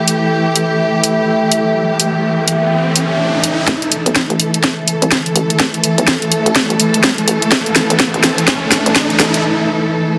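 A swung 125 BPM bass house groove in 4/4 drives this bouncy, aggressive excerpt, where up-front symphonic strings with vibrato and portamento hold pumping sustained chords over a warbling, lo-fi pad with chorus and phaser, a cracking overdriven garage snare and hi-hat from 0.1 seconds, an electronic riser from 1.3 seconds, and a hollow, knocking FM bass and tight kick arriving at 3.7 seconds for a build-up that breaks at 9.4 seconds, all in a lush hall reverb.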